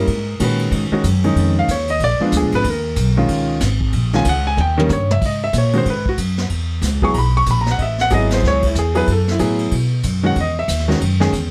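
Closely miked and nearly dry, this moody, late-night jazz piano trio fragment swings at 186 BPM in 4/4, moving from Eb minor into G# minor at 5.2 seconds. An intimate concert grand with deep bass and audible action noise carries the melody as a solo up front, while a woody, thumpy upright bass with gut strings plays pizzicato beside it. A vintage brush kit with a rolled-off top and tight kick sits further back and plays a short fill from 4.6 seconds.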